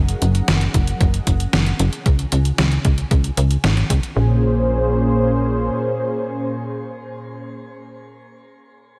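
A tight, punchy sequencer bass drives this synthwave cut at 114 BPM in Bb minor. Its sawtooth and square-wave tone is roughened by tube saturation and ring modulation, and each fast-attack, plucked note decays while pumping through sidechain compression. Up front beside it, a smooth, detuned analog pad holds sustained chords through Gbadd9, Db and Bbm7, thickened by chorus and a shimmer reverb and pumping in the same way. A detuned 8-bit digital drum machine supplies hi-hat and a fat snare, joined by a thumpy electronic kick, both carrying a sampler-style, tape-warm character from being re-recorded in a small room. The drums fall away first, the bass stops at 5.7 seconds, and the pad rings alone until 7.8 seconds, all inside a lush hall reverb that gives a big arena sound to this driving, nostalgic music.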